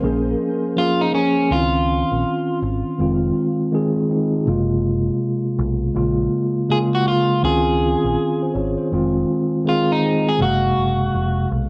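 A swung 4/4 groove at 81 BPM carries this melancholic, hazy hip hop excerpt in Bb minor. A mellow, clean tine electric piano sits up front, filtered and tape-soaked, over a cycle of Bbm7, Dbmaj9, Fm7 and Gbmaj9#11, while a dark, round picked dub bass anchors the low end. From 0.8 s a slightly broken-up electric guitar carries the melody with its own low-pass filter, cassette tape and analog delay, and light digital reverb softens the home cassette recording.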